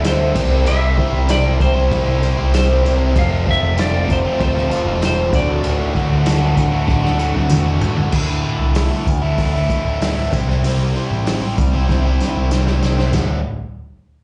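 A clean, scooped lap steel slide melody opens over a stack of guitars (a crunchy, double-tracked one in the background, a bright distorted one and a dark, phased semi-hollow, all with slapback echo), backed by a round, up-front overdriven bass, a muffled vintage kit with a punchy kick and a jingly tambourine in the background, in this driving, sunny classic rock cut at 96 BPM heard live through a club PA, where the lap steel stops at 7.5 s, the chords move from C, F and D to Dsus2 and C, and drum fills close phrases at 6.9 s and 11.9 s.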